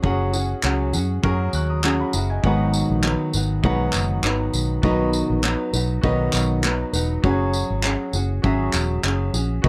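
Carefree and heartfelt, this snippet of acoustic pop rides a gentle swing through F#sus2, G#m7 and B chords, shifting into a new section at 2.4 seconds. A dark, fingerpicked nylon-string guitar and a round, punchy, foam-muted vintage electric bass sit up front, joined by a loose, lo-fi drum kit of muffled, tight kick, handclaps and tambourine with a rolled-off top. A clear, polished baby grand piano plays softer in the mix, and close, detailed microphones with light reverb keep the sound intimate.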